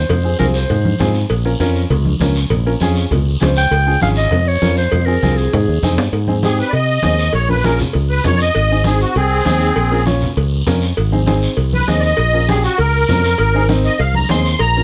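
A growling, gritty clarinet opens this joyful, danceable cumbia excerpt in Ab major at 198 BPM, riding over a punchy, growly fingered electric bass, woody upright piano, ringing congas, metal-shell cowbell and timbales, and a raspy guiro. The clarinet's vibrato-laden solo returns at 3.6 seconds and is joined by a drum fill near its close, and at 6.4 seconds a shimmering, reedy musette accordion takes the lead, sitting up front with the bass over Bbm and Ab changes. The sound is close and detailed with little reverb, and the congas remain in the background.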